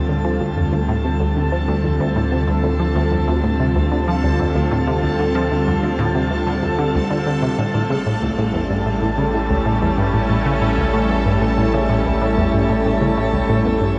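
A straight 4/4 pulse at 94 BPM drives this hypnotic, mysterious stretch of ambient, sequencer-driven space music in D minor, tuned to A4 = 442 Hz and cut from a longer piece. A tight sequenced synth plays the driving, evolving riff from 0.1 s to 13.9 s. Its detuned sawtooth tone has a plucked filter and fast attack, yet stays mellow and sustained, treated with chorus and tape echo. Up front, an airy, bright sawtooth pad holds sustained chords, its slow attack, noise layer and filter swell giving it a sweeping, resonant character under chorus. A deep, round sine sub bass anchors the low end, while a bubbling texture of random resonant filter steps sits in the upper register with chorus and its own built-in reverb. The harmony moves from Dm7 to A7 at 7.6 s, all inside a wet shimmer reverb with a long tail and a dark, warm production.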